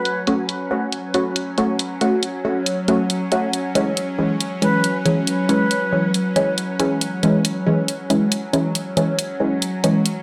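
A brooding, heavy deep dubstep excerpt at 138 BPM in a swung half-time feel opens on a brief airy shakuhachi note over a tense, string-like bowed drone with phaser and reverb, and muted, detuned sawtooth chord stabs placed up front with phaser and dub echo, moving from F#m to C#m at 3.5 seconds. A tape-warm, low-pass filtered electronic hi-hat enters at 0.1 seconds, and the reedy, bamboo-toned shakuhachi returns at 4.6 seconds with vibrato and dub echo. The echo-heavy mix sits in a moderate spring reverb.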